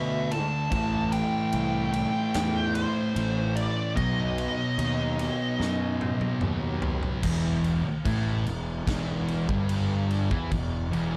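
Brooding and hypnotic, this short stoner and doom metal excerpt moves at a heavy 74 BPM in E minor, cut from a longer piece. Two dark, thick fuzz guitars grind out the riff in the background, joined by an up-front, overdriven electric bass that sounds punchy and warm. A compressed, distorted fuzz lead guitar carries the melody up front, coloured by wah and tape echo, until it stops at 6.4 seconds. The acoustic drum kit rings in a big, natural room with bright cymbals, a medium-tuned snare and a punchy kick, and a drum fill from 5.6 to 7.2 seconds leads into the next section. The harmony moves through D5, Am and B before settling on Em, all set in a studio reverb within a dark, warm production.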